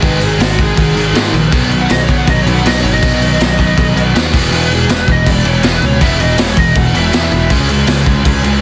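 Dry, dense and heavily limited, this short punk rock recording has little reverb and a rowdy, energetic drive in straight 4/4. Up front, a raw garage drum kit recorded in a small room pounds kick, snare and crash with a gritty, saturated sound and a rolled-off top until 8.5 seconds. Beneath it, a growly, direct electric bass punches out the low end. Three distorted rhythm guitars play riffs: a bright cranked stack guitar and a double-tracked tight distorted guitar sit in the background, while a dark, sludgy guitar lurks very quietly underneath. Over them, a warm, bluesy overdriven lead guitar plays a picked solo from the start and stops at 7.5 seconds, as the chords move from Ab5 through B and E to Db5.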